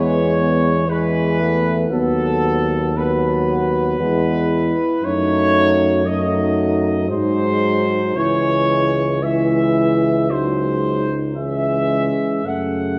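A brass band opens together in a solemn, yearning hymn at a slow 57 BPM in 3/4, moving with a rubato feel in C# minor. The trumpet section carries the melody up front with a dark, punchy, tight tone, yet it still sounds distant and roomy. Beneath it, a mellow French horn section sings a second line with light vibrato, set in the background. A warm euphonium and a trombone, itself distant and roomy, fill in the accompaniment, while the tuba anchors the bass with light vibrato. The harmony moves from E through B7/D# and G#7 to settle on C#m before reaching F#m at 12.4 seconds, all within a moderate reverb that suggests a scoring stage, in a passage cut from a longer piece.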